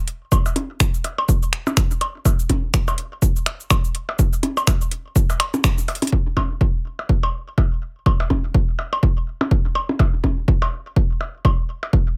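A punchy, tape-warm analog kick sits up front in this clinical, sparse techno piece, cut from a longer track, and thumps from 0.3 seconds to the very end. Around it, a layered garage kit of cabasa, finger snaps and metallic hi-hats runs with a swung sixteenth-note feel. The kit's overdriven grit is dulled by low-pass filtering on its snare, percussion and hats. Electronic percussion blips, set lower in the mix and touched with digital delay, flicker through the whole track, and both they and the kick carry the boxy character of a small room. After a band accent and a drum fill, the kit drops out at 6.2 seconds, leaving kick and blips to carry the second half over a dry backdrop with a faint mains hum underneath.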